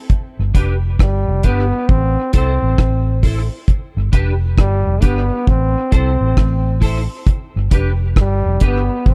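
A clear trombone carries the melody from 1.0 seconds, its pop-style line touched with light vibrato and tape echo, over a sunny, warm roots reggae groove at a relaxed 67 BPM with a swung sixteenth feel in G mixolydian, moving between G and A minor. Up front, a deep, dry drum kit with a tight kick, hi-hat and rim click sits beside a round, punchy, foam-muted vintage bass. Further back, a clean picked electric guitar adds accompaniment colored by ensemble chorus and tape echo, all within a dark, close production that has little reverb.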